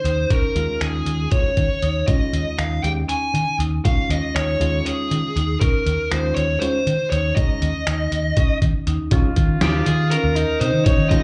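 Progressive instrumental band music in 7/8 at 239 BPM in eighths, intricate and driving over an Eb7sus4 chord: a dark, compressed fuzz lead guitar up front carries the melody and takes a solo from 9.1 s, alongside a growly, punchy picked electric bass, a gritty, pitched-down trip hop sampler-style drum kit with thumpy kick, snare, hi-hat and finger snaps, woody marimba arpeggios, an overdriven tine electric piano accompanying in the background, and a breathy subtone alto saxophone adding a second line from 9.1 s, the whole fragment of a longer piece heard as a live gig through the venue's PA with moderate club reverb.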